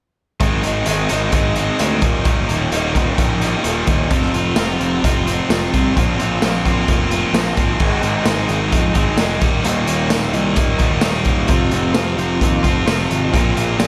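A straight 4/4 feel propels this carefree, upbeat indie rock cut from a longer piece, where a bright, up-front overdriven stack guitar riff rides over a fuzzed, picked electric bass and a gritty, punchy garage drum kit with dark cymbals, snare, kick, hi-hat and tambourine in a pumping small room, all three playing from 0.4 to 13.9 seconds through a chord cycle of Ab, Eb, F5 and Bbsus2 under light reverb.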